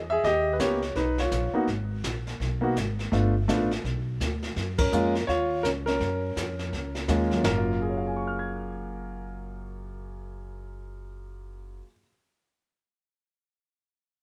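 Woody pizzicato upright bass opens this relaxed, sophisticated swinging jazz piano trio excerpt, joined at once by a smooth, vintage grand piano up front carrying the melody with slapback echo, and by a distant, roomy brush kit with dark cymbals and a boomy kick that plays through a full-band accent at 4.7 seconds before it stops at 7.7 seconds, in a dry mix.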